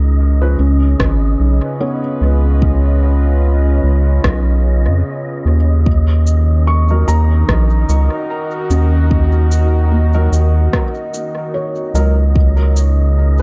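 Ambient dub with a spacious, meditative mood, this short section of a longer piece moves at an unhurried, lightly swung pace over a dark, warm production. A warbling, nostalgic pad with chorus and built-in reverb holds sustained, detuned chords, while a round, deep analog bass sits up front and an airy, breathy noise layer drifts high above like wind. A woody upright piano sounds brief stabs from 0.4 seconds, then returns at 6.9 seconds, tucked in the background with dub echo. A soft, felt-muted upright piano plays intimate arpeggios with audible action noise, also trailing dub echo. From 1.0 seconds a layered electronic kick and a tape-warm rim click and cabasa, the latter echoed and re-recorded in a small room, set a gentle groove as the harmony moves from Db7 to E-flat minor.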